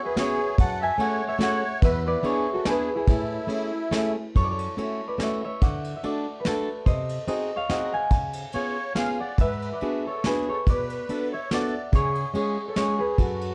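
A swung waltz in 3/4 at 143 BPM, loosened by rubato, carries this nostalgic, whirling musette piece, cut from a longer work. A soft brushed drum kit, smooth and up front, with a tight kick, medium-tuned snare and rolled-off top, sits beside a boxy, fingerpicked acoustic guitar that plays the swing-style accompaniment across a span from E2 to A4. A thumb-plucked concert harp takes the melody with a ringing, up-front tone, while the reedy musette accordion adds a shimmering second line, dropping out at 4.1 s and returning at 8.5 s. The harmony begins in A major and turns to F# minor at 4.4 s as a new section starts, passing through chords such as Amaj7, F#m7, G#m7b5 and Bm7. A moderate studio reverb and a dark, warm production round out the sound.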